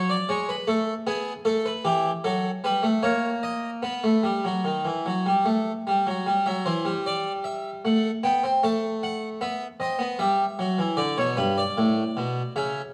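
A solo harpsichord opens at once, its plucked French-style voice sitting up front and mid-forward with a full, brilliant sound drawn from three sets of strings. This is a classical, baroque-style two-part invention in E minor, moving at 76 BPM in a straight 3/4, and its mood is solemn and contemplative. The instrument ranges from G2 up to A5 as the harmony passes through shadowed, unsettled colours before reaching B, then opens a second section at 6.3 seconds on E minor and travels toward a close on B minor. A moderate recital-hall reverb gives the instrument a sense of space. The whole recording carries the character of worn, old cassette tape, with a warbling pitch drift that lends the stately counterpoint a faded, uneasy quality. Cut from a longer piece, the passage runs about 12.8 seconds.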